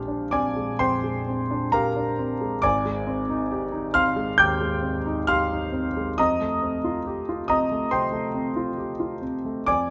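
Close, detailed microphones and a light reverb place the concert grand up front and intimate, close enough that the soft clatter of its action can be heard beneath the notes. This is a short cut from a longer impressionist classical piece for solo piano, hazy and luminous in mood. It moves at a slow, breathing 62-70 BPM in 4/4, played with a free rubato feel, on an instrument tuned to A4 = 438 Hz. The piano alone fills the entire 9.9 seconds, spanning from a deep Ab1 in the bass up to G6. The harmony drifts through lush extended chords, from Bb13 at the start to Abmaj7#11 at 2.6 seconds and F9 at 6.2 seconds. The tone stays natural and unadorned, letting the rich voicings glow.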